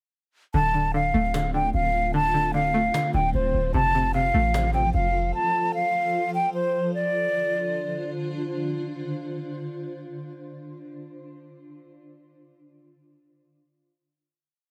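A brooding, melancholic trap piece opens at 0.5 seconds with everything but the pad arriving together. A breathy, hollow concert flute carries a looping, tongued melody with vibrato, close and up front like a sampled loop. Beneath it, a twangy, string-like resonator pluck plays a patterned eighth-note arpeggio with chorus and a filter sweep. A punchy, heavy 808-style bass holds long sub-bass notes, and a snappy cajon in a live room drives a half-time trap beat with fast hi-hat rolls and a clap-layered snare. From 1.3 seconds a cloudy granular pad fades in with blurred, evolving sustained chords, detuned unison voices, a moving notch and its own reverb. Before the hook ends, the drums, bass and pluck drop away, and from 6.9 seconds the flute and pad carry a final chord before the pad's long release trails off under light reverb.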